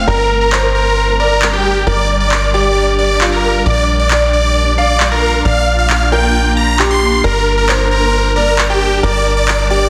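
A huge, bright supersaw lead carries the euphoric melody of this driving uplifting trance excerpt at 134 BPM in G minor, with digital delay, over a boxy grand piano second line touched by dub echo and audible action noise, a shimmering, ethereal pad with chorus, a punchy filter-plucked sequencer bass, and layered electronic handclaps entering at 0.5 seconds, all in a dense, heavily limited modern master as the chords move from Gmadd9 to Bb and back.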